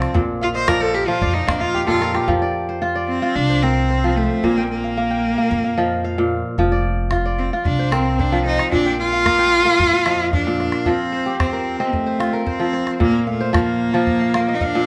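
A clear, bowed cello with vibrato carries the melody up front over crisp, ringing fingerpicked kora arpeggios in this joyful, warm West African traditional piece at 112 BPM in F mixolydian, joined by a woody, thumpy pizzicato upright bass that stops at 10.7 seconds and a small, dry calabash that drops out at 2.3 seconds and returns at 6.6 seconds, the band playing live together in a large studio with moderate reverb, cut from a longer piece.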